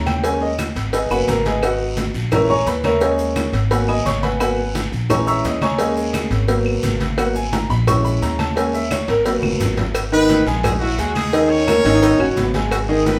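Recorded as a band playing live in one room with a wet large-studio reverb, this passionate, danceable salsa excerpt in G# minor moves at 173 BPM. A clear, intimate concert grand piano sits up front with audible action noise and takes a solo until 9.9 seconds over cycling D#7sus4, G#m7 and A#m7b5 chords. It is anchored by a dark, thumpy pizzicato upright bass with gut strings, bright low-tuned congas, a tight high-tuned cowbell, woody claves, a raspy guiro and grainy maracas in the background. A brilliant, punchy horn section enters with the melody at 10.1 seconds, and a smooth baritone saxophone with vibrato adds a brief second line at 11.9 seconds.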